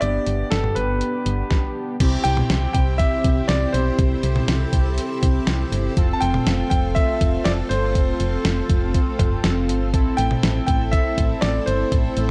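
Dark and warm with light reverb, this upbeat, nostalgic synth-pop excerpt at 121 BPM in C major sets a clear concert grand piano melody over bold, fat analog synth brass with chorus, a punchy, round FM bass and a thumpy 12-bit drum machine with cowbell, toms and crash cymbal sitting up front, while a shimmering string machine of violins with ensemble chorus enters in the background at 2.0 s as the chords move from G through C, F and Am.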